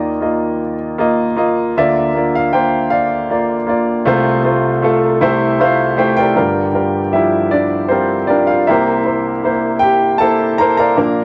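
A 6/8 pulse with a straight feel carries this hopeful, heartfelt acoustic folk-pop ballad, a short passage taken from a longer piece. A solo grand piano plays throughout, spanning G1 to Bb5, with a clear, intimate tone, long sustain and audible action noise. The harmony moves from Ebsus2 through Bb/D and F/C to C6, then turns at 6.4 seconds into a second section built on Gm7 and C7. The piano sits up front and present, its sound polished and framed by light reverb. This home recording on cassette is tuned to A4 = 439 Hz.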